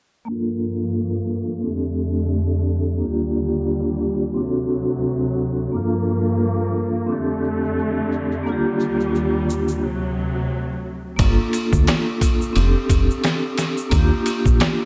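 A smoky, brooding trip hop excerpt opens at 0.3 s with a ringing, metallic vibraphone, its tremolo and tape echo passing through a sweeping low-pass filter in a boxy small room, over lush, bowed symphonic strings holding smooth, vibrato-rich chords through a Gm7–F6–Ebmaj7–D7 cycle; a close, dry egg shaker joins at 5.7 s, and after a brief break the strings stop at 11.2 s as a round, deep fingered dub bass and a gritty, pitched-down sampler-style drum kit enter, the kit's thumpy kick, medium-tuned snare and ride cymbal sitting up front with overdrive, 12-bit crunch and studio reverb over a lightly swung groove.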